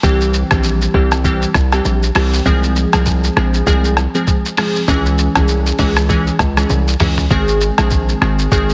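This afrobeats excerpt moves at 99 BPM in 4/4 with a lilting 16th-note swing, carrying a sunny, romantic mood. Glassy digital keys supply the accompaniment throughout, their detuned sine and triangle tones thickened by a sub octave, a filter sweep and a shimmering chorus, with notes that strike quickly and then decay. Underneath, a hard-hitting 808-style bass delivers punchy, heavy sine tones with a noise layer on top, attacking fast before fading. The lo-fi sampler-style kit of hi-hat, thumpy kick, rim click, shaker and toms sounds pitched down, muffled and tape-warm, and a short drum fill arrives at 6.7 seconds. The harmony passes through C, Fm, Dbm and Ab, and the whole mix has a heavily compressed, radio-like digital ambience with keys, bass and drums all up front.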